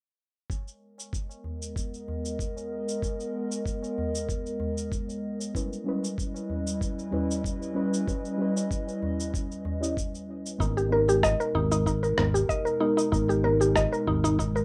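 A gritty, thumpy electronic kick with a sampler-style shaker and rim click sets a straight 4/4 groove from 0.5 seconds alongside a low-tuned, ringing tabla, while a warbling, detuned tape-like pad with chorus, built-in reverb and sidechain pumping casts a dark, nostalgic haze over this earthy, mystical organic downtempo excerpt. At 5.5 seconds a deep, nasal chord stab with filter sweep, delay and pumping adds soft weight, and at 10.6 seconds a woody, bright mallet-like synth pluck plays arpeggios with delay beside a growly, punchy fretless electric bass with lush chorus. The mix has the rough character of a home demo, set in a wet small room.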